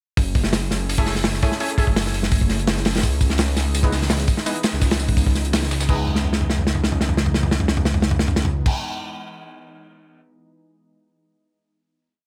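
A heavily chopped, crunchy breakbeat drives this frenetic yet atmospheric drum and bass and jungle piece, joined by a deep, rumbling detuned saw bass in a dub-style line, a very quiet, ethereal pad of held chords, and bold, punchy orchestra-hit-like synth stabs trailing dub echo, while a dusty, tape-warm sampler-style kit loops in the background from 3.0 to 5.9 seconds, and the up-front breakbeat kit carries on alone after 8.7 seconds.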